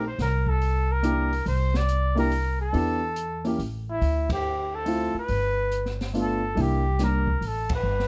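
Close, detailed microphones and light reverb give this short excerpt of small-group swing and bop in a lilting 3/4 an intimate, sophisticated character. A mellow, soft-edged trumpet carries the melody with a distant, roomy tone, while a woody, thumpy pizzicato upright bass holds down the low end and a dark, smooth drum kit with dark cymbals, a high-tuned snare and a boomy kick sits lower in the mix. A warm baby grand piano, its action noise audible, joins at 1.0 s to accompany, and the band strikes accents together at 4.2 and 7.6 s.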